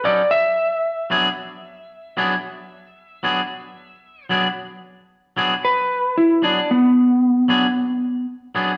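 Soulful and swaggering, this short cut from a longer blues piece moves at 113 BPM in 4/4, with a light swing on the sixteenths and a center in E mixolydian, tuned slightly sharp to A4 = 443 Hz. An electric slide guitar carries the melody from B3 up to E5, its dark, slightly broken-up tone sitting up front, and it steps into a solo at 4.8 seconds. Beside it, a clean, twangy electric guitar plays stabs between F#3 and A4, also up front, over chords that move from a rootless B9 to E9 and then to a rootless E9. The two guitars sound like a band playing live in one room, bathed in a wet, large studio reverb with a 1.3-second tail. Both parts run nearly the whole length, with the stabbing guitar ringing on to 8.7 seconds after the slide stops.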